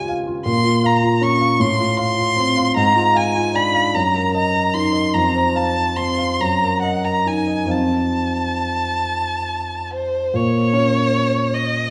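Bathed in a wet recital hall reverb, this short cut from a longer romantic classical duo unfolds in a melancholic, elegiac 6/8 with free rubato, as a distant yet expressive solo violin sings the melody with vibrato and portamento over a warm concert grand piano whose deep bass and long sustain carry the accompaniment before the music turns toward a new section at 10.3 seconds.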